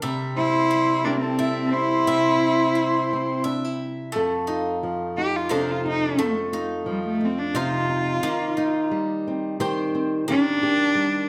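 A small fingerpicked nylon-string guitar and a bright, double-strung bowl-back mandolin playing picked arpeggios open this hopeful, peaceful acoustic folk piece in a gentle waltz time. At 0.4 seconds a bowed cello, up front with a nasal, smooth tone and light vibrato, takes the melody while a reedy, mellow accordion adds a full second line until 3.4 seconds. The cello then carries a solo from 4.1 seconds over chords moving from C to F7 and Eb6, all bathed in a wet large-studio reverb, in this excerpt cut from a longer piece.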